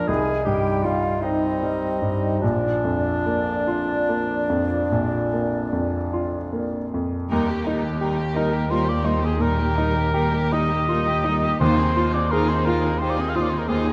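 Lush and passionate, this romantic classical movement for piano and orchestra sways in a rubato 12/8 at about 48-59 BPM in Eb major. A clear, up-front baby grand piano carries the melody throughout, first over a dark French horn section's sustained chords, a mellow bassoon's accompaniment, and second lines from a punchy clarinet and an airy, hollow flute section. At 7.3 s bowed strings with vibrato enter, with a violin section on the melody in the background, a second violin section and rich violas filling the middle, and woody cellos and double basses holding a low Eb. A solo cor anglais soon joins, singing a second line up front, while very quiet timpani with soft mallets add a round Eb near the end and a moderate concert-hall reverb surrounds this brief cut from a longer work.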